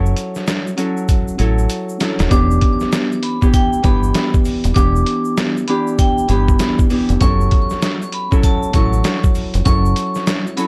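Fingerpicked Celtic harp chords and a round, up-front dub bass open this gritty, dark boom-bap hip-hop excerpt at 98 BPM in E dorian; a muffled, pitched-down sampler drum kit with a thumpy kick and a tape-flavoured sound plays a fill from 1.1 to 2.3 seconds beside a grainy egg shaker tucked in the background, and from 2.3 seconds a bright, ringing hard-mallet vibraphone melody with plate reverb and delay floats over swung sixteenths in a warm production with light reverb.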